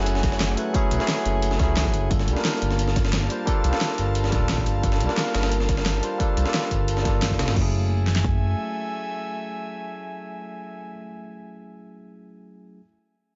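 Light reverb and a digital ambience frame this soulful, melancholic fragment of liquid drum and bass, whose top end is rolled off above 7.6 kHz. At 176 BPM in a straight 4/4, a barky tine electric piano sits up front through a combo amp, carrying vintage 12-bit sampler grit, a low-pass filter and digital delay, with a filter sweep running over it until 7.6 seconds. An airy, breathy pad with a detuned tone and a noise layer holds chords beneath it, coloured by chorus and sidechain pumping, while a smooth, dark synth bass anchors the low end as the harmony moves from F#m9 to Gm9 and back. Three drum layers stack together: a gritty, compressed breakbeat sampler-style kit with a high-tuned snare and high-pass filtering on its hats, snare and small room, plus two electronic pop kits adding a punchy kick, fat snares, bright hats and a crash cymbal. A very quiet, twangy clean electric guitar plucks a single F#4 in the first half second. 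The breakbeat kit and the crash-and-hats pop kit drop out around 7.6 seconds, while the kick-and-snare pop kit lingers until about 8.3 seconds, as the closing section hands the music to the piano, pad and bass.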